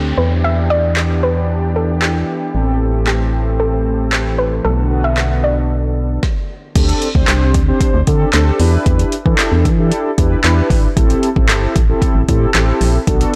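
Dance-pop in E minor at 114 BPM, bittersweet yet driving, cut from a longer piece: a soft, round pluck carries the melody over a lush, thick unison pad and mellow, brassy synth chords, while a hollow, organ-like FM bass pumps beneath them and a downlifter drifts in the background. An overdriven deep house kit with a deep kick, woody snare, metallic hats, handclaps and crash enters at 1.0 seconds, and the chords move through Em7, Am7 and Bm7 before the pluck and pad stop at 6.2 seconds for a brief break. The drop lands at 6.8 seconds on D7sus4, where the brass, bass and drums push on in a blown-out, lightly reverberant mix.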